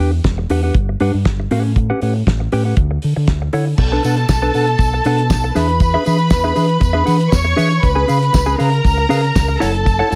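Glamorous and celebratory, this short disco excerpt moves with a straight, steady feel. A mellow, clean electric guitar, fingered and compressed, plays the accompaniment from the first moment, over a round, up-front fingered bass with a dark, amped tone. The damped 70s drum kit comes in at 0.2 seconds with a fat snare, a tight kick, hi-hat and dark crash cymbals, its dry, rolled-off top keeping the groove smooth. At 3.8 seconds a lush, up-front studio string section enters as a second line, bowed with intense vibrato, and a jingly tambourine joins at 4.0 seconds in the background. Rich seventh and ninth chords such as Em9, Dmaj9 and C#7 give the harmony a polished sheen, and a light studio reverb frames the mix.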